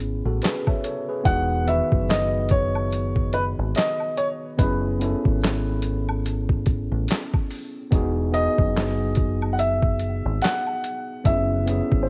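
Cassette-worn and softly reverberant, this cosy, dreamy lo-fi hip hop excerpt in E major at 72 BPM with a 16th-note swing drifts between F#7sus4 and Emaj9, as a slightly out-of-tune, lightly overdriven tine electric piano and a round, dark fingered dub bass sit under a muffled, pitched-down sampler drum kit with a thumpy kick, handclaps and hi-hat entering at 0.4 seconds, a woody upright piano carrying the melody from 1.3 seconds, and a close, dry egg shaker and woodblock tucked in the background.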